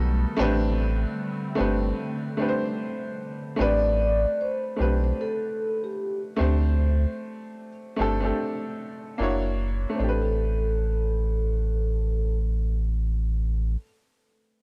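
A deep, round dub sub bass sits up front in this reflective, melancholic hip hop excerpt, holding soft sustained low notes under a gently swung 16th-note groove until about 13.8 seconds. A woody, boxy upright piano plays accompaniment throughout, its short-sustain chords softened by a cassette tape character and a low-pass filter. In the opening 3.6 seconds a hollow, flute-like pad warbles beneath it, its detuned vintage tone thickened by ensemble chorus. Once the pad stops at 3.6 seconds, a vibraphone struck with soft mallets takes the melody, its mellow metallic ring carrying a slow motor vibrato through a small room sound. The harmony drifts from Am11 through D7sus4 and F#7b13 before settling back on Am11. The whole piece has a dry, gritty hardware feel with light reverb and tape coloring.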